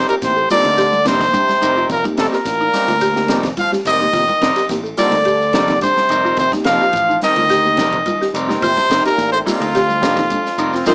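Hypnotic and funky, this afrobeat excerpt at 107 BPM rests on a single F9sus4 chord in F mixolydian. A brilliant, close-miked trumpet leads the melody up front, while a clear trombone section with vibrato and tape echo carries a second line in the background, joined by woody rosewood marimba arpeggios, twangy, slightly broken-up guitar stabs with tape echo, a round, dark fingered bass, and a reedy, worn electric piano with fast tremolo that enters at 0.2 s. A dry cocktail kit with dark cymbals, a high-tuned snare and a punchy kick arrives with grainy shekere at 0.1 s, thick-skinned congas follow at 0.5 s, and the recording sits in a moderate club reverb with a small-speaker sound.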